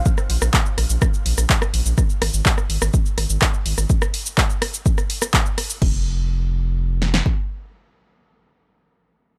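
Punchy analog drum machine kick and snare drive this melodic techno excerpt, cut from a longer piece, from 0.1 to 7.4 seconds, alongside crash, handclaps, hi-hat, rim click and shaker that pump against the sidechain until 5.9 seconds. A round, deep analog bass with a fast attack and dark, sustained tone sits up front between F1 and Bb1, pumping in the same way through the opening drop. The sound is dry and gritty with transformer saturation, the drums tape-warm and re-recorded in a small room, giving a driving, cinematic mood.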